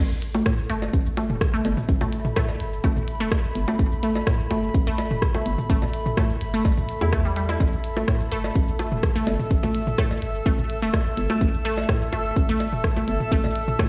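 Played back through a big sound system in a bare stone room, this clinical, quirky stretch of minimal techno, cut from a longer piece, sits inside a drop where a hollow, bouncy FM bass pumps with the sidechain from the very start. An overdriven click kit of cabasa, clicky hi-hat and rim click, re-recorded in a small room, joins at 0.1 s, and echoing electronic bongos, cowbell and toms arrive at 0.3 s with a juicy, squelchy blip pluck riff colored by chorus, phaser and delay. At 0.5 s a punchy, layered electronic kick lands up front. From 0.6 s a warbling, nostalgic, lo-fi pad of detuned sawtooth and triangle tones fades in slowly and sustains, mellow and pumping.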